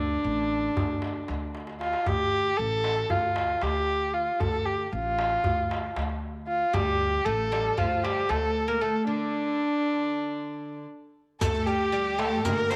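In a straight 9/8 at 231 BPM counted in eighths, this longing, soulful Turkish makam ensemble excerpt in D minor sets a warm, up-front bowed kamancheh melody with vibrato and portamento over a woody pizzicato upright bass and a crisp, deep, distant metal-shell darbuka, while a plectrum-plucked fretless oud with double strings adds a second line that drops out after the opening and returns at 6.7 seconds; a drum fill and a break pass before a bright, intense chamber violin section and a dark-jingled riq join at 11.4 seconds, the ensemble sitting in light reverb and studio ambience.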